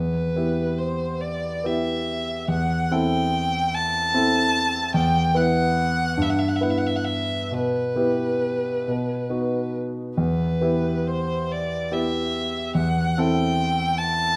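A single bowed violin carries the melody up front with a rich, smooth, even tone and vibrato, singing over a clear concert grand piano whose accompaniment reaches down into a deep, open bass. This solemn, elegiac romantic duo moves slowly in 6/8 at about 44-50 BPM with flexible rubato, settling in E minor through harmonies such as Em, Am/E and B. Close, detailed microphones catch both players inside a moderate recital hall reverb, and the passage is cut from a longer piece, running 14.4 seconds.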